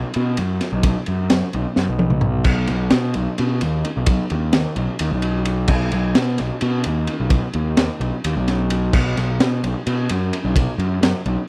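A driving 7/8 pulse counted in eighths at 260 BPM gives this short psychedelic rock fragment, cut from a longer piece, a lopsided, trippy momentum in B major with a straight feel. A fuzz-drenched picked electric bass opens at 0.0 seconds, its overdriven, amped tone sitting up front as it works between B1 and B2. The crunchy breakbeat drum kit joins at 0.1 seconds, its dark, gritty, smooth character coming from a punchy kick, a high-tuned snare, and a rolled-off top, with crash and ride cymbals and toms rounding out the kit. A drum fill from 1.8 to 2.5 seconds briefly breaks up the odd-metre groove before both parts ride on together to the end. The sound is dry and close, like a 1970s studio session, leaving a kaleidoscopic, saturated pairing of bass and drums with little room ambience.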